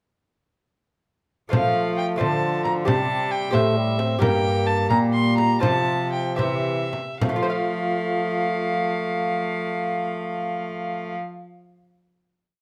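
Stately and festive, this short renaissance-style consort dance in F major moves in a straight 6/8 at roughly 71-90 BPM, counted in dotted quarters. A dark, gut-strung violin carries the melody with light vibrato and a reedy, slightly distant period tone, while a rich cello holds a sustained bass with passing notes. A mellow, smooth-topped bassoon adds independent inner lines and sustained chords, and a bright lute fills out the harmony with delicate fingerpicked, rolled chords on doubled gut strings. A small hand frame drum, struck with hard hands in a live-sounding room, drives the dance rhythm until about 7.5 seconds. The tempo slows from 3.5 seconds as the harmony passes through G minor and a suspended C before settling at 7.2 seconds on a long final F chord that rings into a moderate stone-room reverb.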